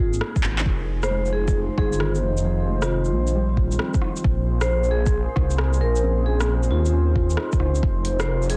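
A swung 134 BPM future garage groove in 4/4 and F minor brings a drum fill at 0.4 seconds, where an overdriven, gritty electronic kick joins a deep house kit of handclaps, metallic hi-hats, rim clicks and shaker, all re-recorded in a large room. A menacing detuned saw bass sits up front with tube saturation and sidechain pumping, under a dark analog pad with chorus and phaser and muted felt-like synth keys tucked in the background, as the chords move from Fm7 to Bbm9. Above them a ringing, band-limited vibraphone carries the melancholic, ghostly melody with sampler grit and analog delay, while a very quiet glassy texture drifts only in the first 0.7 seconds of this short cut from a longer piece, all in a dense, heavily limited mix with cassette coloring.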